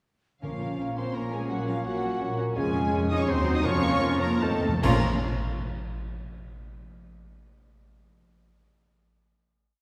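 Heard from further back in a wet concert hall, this short, complete romantic orchestral movement in triple time has an urgent, stormy character and a flexible, rubato pulse. A lush bowed violin section carries the melody with vibrato, doubled by hollow-toned flutes in unison and thirds, while rich violas and expressive cellos double the tune at the octave in the background. A second violin line adds very quiet repeated notes, and a warm oboe, a bright, vintage-sounding clarinet and a distant, mellow bassoon hold sustained chords beneath. A French horn section plays a counter-melody and sustained chords alongside a trombone section, while woody double basses mark the beats under hard-mallet timpani rolls and single strokes. Dark cymbal swells, crashes and bass drum strokes enter at 2.6 seconds as the music slows, a timpani fill arrives at 4.4 seconds, and an accented full-orchestra chord lands at 4.8 seconds to close the piece.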